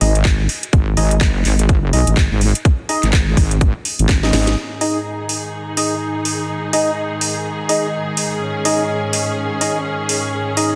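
A gritty, swaggering bass house cut at 125 BPM with a swung 16th feel opens on hollow, dark organ stabs drenched in lush chorus, tape echo and sidechain pumping, over a heavy, saturated sawtooth wobble bass and an overdriven house kit of cracking snare, metallic hi-hats and handclaps, with a tight, up-front electronic kick joining at 0.3 seconds. The kick drops away at 4.2 seconds during a drum fill, the bass follows at 4.6 seconds, and a rich, smooth studio string section enters alongside the organ and drums with sustained, bowed chords carrying light vibrato and their own sidechain pump. The parts sit in a moderate digital hall reverb under a dense, heavily limited modern master.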